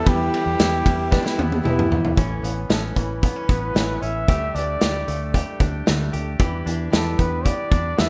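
A rough home demo mix with light studio reverb opens this short, nostalgic and breezy slice of jangly indie pop, moving at 114 BPM in a straight 4/4. A breathy, whispered trumpet carries the melody with vibrato, scooped notes and a soft attack, its dark, intimate tone trailed by digital delay. Underneath, a twangy, direct-recorded clean electric guitar plays compressed, picked arpeggios, while a full-bodied jumbo acoustic guitar sits in the background with audible finger squeak. Warbly lo-fi synth keys with detuned triangle and sawtooth tones, ring modulation and chorus, along with a barely audible string-machine cello pad, colour only the opening until about 2.2 seconds. A round, foam-muted vintage electric bass and an up-front, loose acoustic drum kit with a tight kick and a pumping small-room sound drive the groove, with a drum fill from 1.1 to 2.2 seconds leading into a second section that moves through Aadd9, Dsus4 and Em7 after the opening Em.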